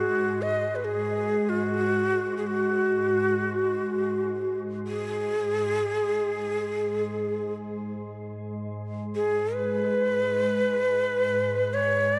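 Awash in a huge ambient reverb over a faint mains hum, this spacious, haunting fragment of free-time world meditation music in G# minor pentatonic places a breathy Native American-style cedar flute up front, its woody, unsteady tone carrying vibrato, a soft chiffy attack and tape echo, above a calm, warbling organ-like drone thickened by ensemble chorus and its own reverb, both sounding throughout the 12.2 seconds.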